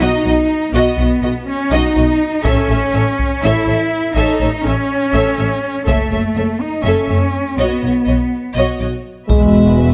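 Lush bowed strings open this triumphant, adventurous orchestral film cue in a straight 7/8, with a distant violin melody over a background second violin line and violas, up-front cellos and double basses rooted below, hard-stick taiko drums crashing in at 2.5 seconds, and at 9.3 seconds sustained French horn chords, a bright triangle and a huge, bright impact arrive, all set in a moderate recital-hall reverb.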